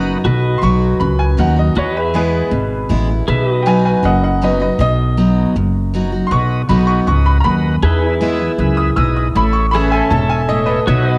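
A brisk, straight 4/4 pulse at 158 BPM drives this nostalgic, heartfelt country fragment in B mixolydian, cut from a longer piece and moving through B, E and A chords. The upright bass sits up front with a woody, thumpy, dark pizzicato tone, while a full-bodied dreadnought acoustic guitar is picked underneath as accompaniment. A twangy, compressed pedal steel guitar, played with fingerpicks and slide and touched by subtle chorus, holds sustained chords throughout. From 0.6 seconds a brilliant upright piano with short sustain takes the solo spot, its bright, natural voice carrying the second line up to E6. A gritty, overdriven tonewheel organ through a slow rotary speaker sounds briefly at the very start and then returns at 6.3 seconds to add thick accompaniment. The whole track has a homespun cassette feel, with moderate spring reverb, small room ambience and a faint mains hum.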